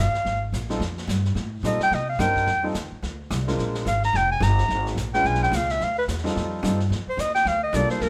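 A clear clarinet and a thumpy, woody upright bass open this short cut from a small-group swing and bop number, with the clarinet taking a jazz-style solo, up front and shaded by a light vibrato. A vintage brush kit joins almost at once, sounding distant and roomy, with a tight kick, a medium-tuned snare and a rolled-off top. From 0.7 seconds a smooth, vintage grand piano with short sustain adds accompaniment beneath the solo. The pace is brisk and swung, yet the mood stays relaxed and warm, with the harmony passing through suspended, ninth, minor seventh and diminished colours. The band plays live together in a moderate stone room whose reverb lends the performance a natural, intimate air.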